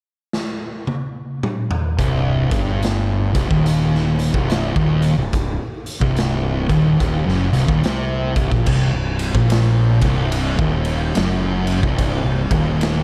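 A raw garage drum kit stands up front with a punchy kick, medium-tuned snare and gritty, saturated tone in a bright stone room, opening with a fill from 0.3 seconds before two dark, distorted fuzz guitars, one set in the background, and a growly overdriven fingered bass enter together at 2.0 seconds on a C minor riff. This hypnotic, brooding stoner and doom metal excerpt moves at a slow 72 BPM in 4/4 with a swung feel, tuned slightly below standard pitch. The dark production carries light reverb.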